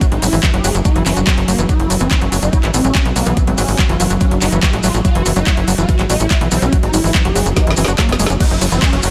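Psychedelic trance with an intense, hypnotic drive, built on an overdriven, knocking kick up front and a tight, nasal sequencer bass, while a squelchy, gritty acid bass riff with sidechain pumping and delay sits in the background, an aggressive, swarming rave lead with chorus, phaser and diffuse delay carries the melody, a very quiet morphing wavetable pad holds sustained chords, a garage kit with a woody snare, metallic hats, handclaps and crash adds layered grit, grainy maracas rustle close behind, and a drum fill at 7.6 seconds gives way to a downlifter at 8.4 seconds.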